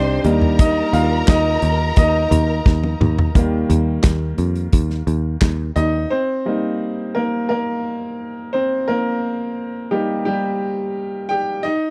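A dry, close recording in a 1970s studio style, this hopeful piano-driven pop fragment moves at 87 BPM in 4/4, in Eb major. A bright, woody, vintage-toned upright piano leads throughout, backed by a distant, lush bowed violin section that drops out at 3.3 seconds, a dark, round, foam-muted picked electric bass, and a punchy acoustic country drum kit in a small room, with handclaps, hi-hat, kick, snare and toms and a drum fill just before the violins stop. The bass and drums fall away around 6.0 seconds, leaving the smooth piano on its own until the clip ends at 11.9 seconds.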